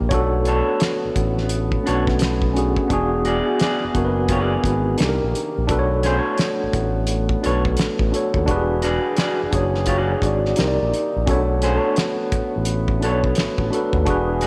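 A mellow, clean tine electric piano carries the accompaniment in this soulful, smooth neo-soul and R&B excerpt at 86 BPM with a swung sixteenth-note feel in B dorian, over a smooth sawtooth-and-triangle synth bass, a cloth-damped, thuddy acoustic kit with a fat snare, tight kick and rolled-off top, and a dark brass ensemble holding smooth-topped chords in the background, while from 0.5 seconds an electric guitar through a small old amp adds a slightly broken-up, picked second line colored by spring reverb, all cycling through Bm9, E9 and Cm9 in a moderate echo-chamber space.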